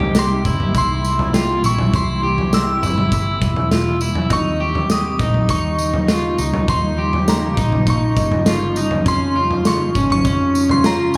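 Dreamy, blissful dream pop at 101 BPM, where a loose, punchy indie drum kit with tambourine and a twangy, slightly broken-up electric guitar playing arpeggios with subtle chorus and tape echo sit up front over a dark, round muted bass and a cloudy granular pad in the background, while a crystalline synth bell carries the melody and a very quiet, delicate celesta appears at 1.3 and 6.7 seconds in a light small-room ambience, moving through C7, Eb9 and Dbmaj7.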